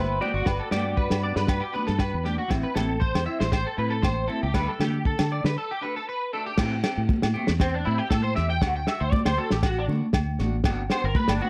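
Lightly reverberant and dry-leaning, this short cut from a longer highlife guitar band piece moves at a carefree, danceable 118 BPM in a straight 4/4. A dark, clean picked electric guitar states the melody until 2.2 s, its tone wrapped in spring reverb and slapback echo, and returns for a solo from 6.6 s. Up front, a twangy, slightly broken-up guitar plays arpeggios through an ensemble chorus and slapback echo, while a second, duskier guitar at the edge of break-up adds phaser-tinged accompaniment lower in the mix. A round, foam-muted fingered bass sits prominently beside a muffled, lo-fi soul drum kit with a tight kick, medium-tuned snare and dark crash. High-tuned congas with a thick skin sound distant in a large room, and ringing agogo bells stay close and dry. The harmony moves from G and Am through Dsus4, then a break arrives at 5.6 s before Am7, D and Gmaj7.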